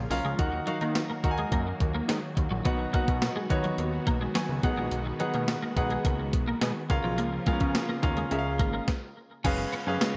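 1980s-style pop with a glossy, uplifting mood, this short cut features a brilliant, up-front concert grand piano with a fill at 4.1 seconds, a thumpy, overdriven 12-bit drum machine with gated reverb, a fat, nasal analog bass, a chorused and delayed twelve-string electric guitar riff, warbling vintage string-machine violas, and a biting, double-tracked overdriven guitar that enters at 9.4 seconds after a stop, all set in a bright digital production with plate reverb.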